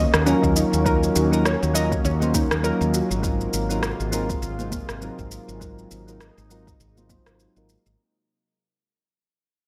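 This relaxed, smooth sunset chillout excerpt opens with a thick, detuned sawtooth pad holding chorused chords in the background, a soft, rounded pluck playing dark arpeggios through lush chorus and tape echo, and a woody, hollow-body fretless bass sitting up front with a subtle chorus. Almost at once, layered electronic rim clicks and shaker arrive, soon joined by mellow electric-piano-like synth keys, whose chorus, low-pass filter and tape echo carry a filter sweep across the whole clip, and a deep, overdriven electronic kick that sounds re-recorded in a small room. The pluck drops away at 3.1 seconds, while acoustic congas played with hard hands slip in at 2.2 seconds, close and dry in the background. At 101 BPM in 4/4 with a 57% swing on the sixteenths, the groove moves from Ebm7 to Ab13 at 3.2 seconds. A moderate digital room reverb gives the mix a digital ambience, and the whole passage fades out gradually from start to finish.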